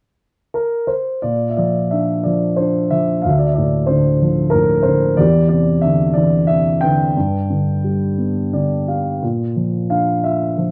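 A dark, warm production with light reverb frames this short classical piece for solo piano, cut from a longer work. The baby grand sits up front, with a mellow, slightly boxy tone and long sustain that lets each chord ring into the next. The mood is moody and brooding, unfolding in 3/4 with a rubato feel that gives the lyrical line room to breathe. The piano enters at 0.5 seconds and moves through a harmonic path of Bb, Dm7, Cadd9/E and G before returning to Bb, spanning from D2 up to G5. A brief fill on the piano at 8.2 seconds adds a small flourish before the passage closes at 10.7 seconds.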